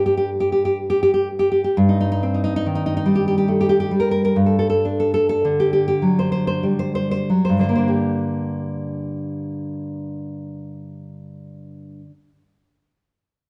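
Romantic solo classical guitar in G minor, this short excerpt in 6/8 moves with a passionate, intimate rubato at a slow 30-49 BPM, slowing down from 0.3 to 7.9 seconds. The fingerpicked nylon-string guitar sits up front with a dark, full-bodied tone, ranging from G2 to C5 as the harmony passes through Cm/G and D/G before settling on Gm at 7.9 seconds. A moderate recital hall reverb surrounds the instrument in a dark, warm production.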